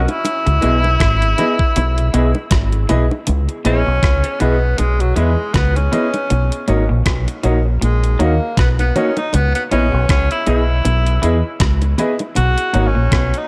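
A distant, roomy tenor saxophone with light vibrato and dub echo opens over a round, punchy dub bass in this longing, bittersweet lovers rock reggae cut at 79 BPM in C# dorian, joined by a thumpy, overdriven 8-bit drum machine with gated reverb, low-tuned bongos, a slightly broken-up lo-fi guitar playing stabs through spring reverb and echo, a very quiet twangy clean guitar riff, and an intimate grand piano with audible action noise, while the saxophone takes a solo from 3.3 seconds over C#m7 and Bmaj7 chords.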